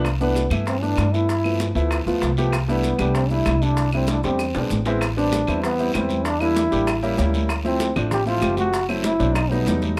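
At a brisk 193 BPM in straight 4/4, this lively, danceable Afro-Cuban jazz excerpt in C major sets a breathy, whispered trombone melody with light vibrato and plate reverb over up-front baby grand piano and woody pizzicato upright bass, while tight high-tuned bongos, damped thick-skinned congas, distant claves and grainy maracas churn in the background beside a close, dry, raspy guiro, a drum fill at 4.1 seconds leading into the second section.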